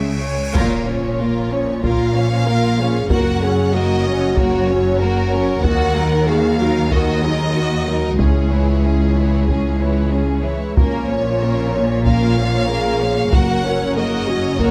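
Epic and heroic, this cinematic orchestral film cue moves at 94 BPM in a straight 4/4, set in Bb minor and cut from a longer piece. It opens with a huge, bright cymbal swell that lands on an impact at 0.6 seconds, where the taiko ensemble enters with heavy sticks in a live room and drives the rest of the passage. A rich chamber violin section carries the melody with focused vibrato and a smooth top, while a lush symphonic violin section plays a second line beneath it. A woody viola section fills in the accompaniment, and a dark, distant French horn section holds soft-attacked sustained chords. Cellos sit in the background and double basses add a woody low end, together anchoring the bass through a cycle of Bb minor, Gb, Eb minor and Db minor chords. Close, detailed microphones and light reverb keep the strings intimate and clear against the weight of the drums.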